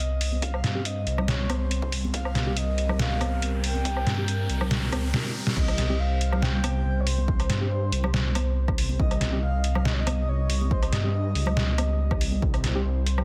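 A deep, rumbling detuned saw bass sits up front from the opening, anchoring this meditative, cavernous deep dubstep excerpt in C phrygian at 140 BPM with a half-time, lightly swung feel. Above it, a breathy, flute-like synth lead carries the melody with tremolo, lush chorus and dub echo, while a moody analog pad holds sustained chords in the background and a mellow tine electric piano adds filtered stabs trailing dub echo. The drums pair a punchy, layered electronic kick with a gritty, pitched-down sampler-style kit of crash, hi-hat, snare and woodblock, joined by bright, saturated congas set further back. A riser enters at 1.0 seconds as the build-up gathers toward a drum fill, and the drop lands at 5.6 seconds. Light reverb and digital ambience surround a dense, heavily limited modern master.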